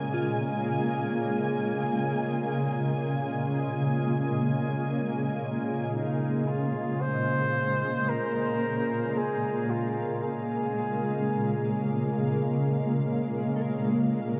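A shimmering, ethereal pad opens this spacious, melancholic ambient passage in free time, holding slow-blooming chords up front with chorus and its own reverb adding an octave-up glint. Above it, a dark violin section sustains a smooth, bowed texture with gentle vibrato, while a clean, very quiet electric guitar picks soft fingered arpeggios from 0.1 seconds. Around 5.9 seconds the harmony deepens from a minor seventh to a minor ninth chord, and the violins gradually fade in from there. At 6.0 seconds a mellow flugelhorn takes a solo melody in a classical style, distant and roomy yet placed forward, its light vibrato trailed by analog delay until 12.3 seconds. The whole mix is dreamy and soaked in a huge reverb, and the passage is cut from a longer piece.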